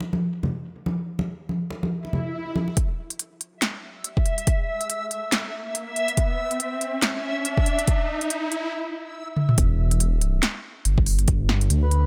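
Low-tuned congas open this brooding, dark deep dubstep excerpt, their soft-handed, thick-skinned tone trailing a dub echo before a swell and riser starts to climb. At 2.8 seconds an overdriven electronic kick and a deep house kit of handclaps, smooth filtered hi-hats, a punchy snare and toms arrive up front, carrying a swung, half-time build-up. Over this, a reversed, dreamy texture rises in its own shimmering reverb, granular and detuned, until the build stops short and a drum fill leads into the drop. At 9.6 seconds a rumbling, saturated saw bass enters beneath the drums, its detuned layers beating against each other as the heaviest element in the mix. A breathy, flute-like synth lead with analog chorus and vibrato slips in for only a moment near the close, all set in a light reverb.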